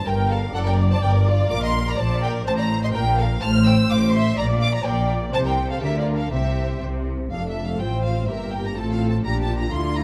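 A quick, restless and dramatic classical-period movement for string orchestra at 125 BPM in 2/4, cut from a longer piece, that settles into F major at 3.4 s, with a lush, vibrato-laden violin section carrying the high melody over a smooth second violin line, focused, close-sounding violas in accompaniment, and rich, distant cellos above an up-front double bass section in the bass, set in a moderate concert hall reverb.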